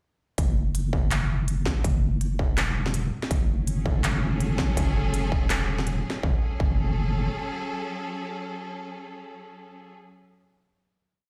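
A swung, sparse half-time drum and bass beat drives this tense, spacious piece, with a distorted, tape-tinged electronic kick up front and an industrial kit of clanging snare, crisp hi-hats and handclaps over a deep, dark wobble bass of long gliding notes with a chorus sheen, while a clear, bowed string section enters at 3.3 seconds with vibrato and sidechain pumping, holding slowly shifting chords after the kit drops out at 6.2 seconds and through the final chord in a large, reverberant room.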